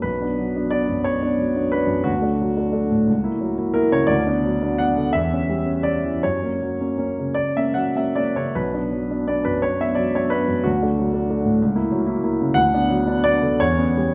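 A warm grand piano, heard alone and up front with a natural tone, carries this passionate, stormy romantic character piece in B minor, moving in a rubato 6/8 at roughly 50-65 BPM in dotted quarters. Spanning B1 to F#5, the harmony circles from Bm through D and F#7/C# to a C#dim/E and an F# arrival at 6.2 s, then restates the progression from 8.5 s before closing on C#m7b5/E. The piano sits in a wet recital hall reverb, and the passage is cut from a longer piece at 14.1 s.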